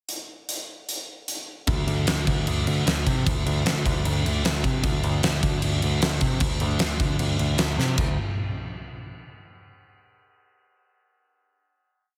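Powerful and swaggering, this short hard rock piece drives along at 152 BPM in a straight 4/4, tuned slightly low to A4 = 438 Hz. A huge arena drum kit opens alone with a pickup bar of kick, snare, hi-hat and crash, its fat snare and boomy kick sitting up front in a big room sound with a big rock groove. At 1.7 seconds a growling picked electric bass joins for the riff, playing driving eighth notes between D2 and C3 with a dark, round, overdriven tone that is direct and amped. A drum fill at 7.8 seconds leads into a final note at 8.0 seconds that closes the whole piece. The mix is dry and heavily compressed, giving it a radio sound shaped by multiband compression.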